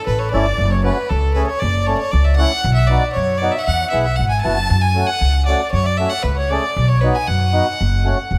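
A woody, dark upright bass sits up front from 0.1 seconds, plucked on steel strings and anchoring this bittersweet, festive klezmer piece in a straight two-beat metre. Above it, a single violin carries the melody with a nasal, earthy edge, light vibrato and an airy bow, touched by tape echo. A reedy single-reed accordion with dry tuning plays a second line in the same high register as the violin. A mellow accordion, full and rich with a tone-chamber colour, fills in the accompaniment from 0.3 seconds, an octave lower in pitch. Light reverb gives the ensemble a modest sense of space, and the passage is cut from a longer piece.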